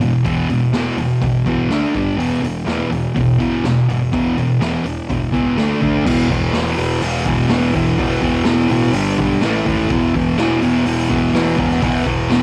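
Recorded at home on cassette in a small room with a moderate, half-second ambience, this short cut from a longer garage rock piece has a gritty, swaggering feel. At 124 BPM in a straight 4/4 and E minor, a thick, double-tracked fuzz guitar sits up front, picking a riff from E2 to D4 with tape-coloured distortion and a warm edge. Beneath it, a bright, growling electric bass with overdrive holds the low end from E1 to E2, tucked into the background. The raw drum kit has a saturated, mid-forward sound, with a boomy kick, a medium-tuned snare, hi-hat and crash, and a rolled-off top. The riff moves through E5, D5 and G5 chords before a second passage from 6.1 s adds A5 and returns to E5.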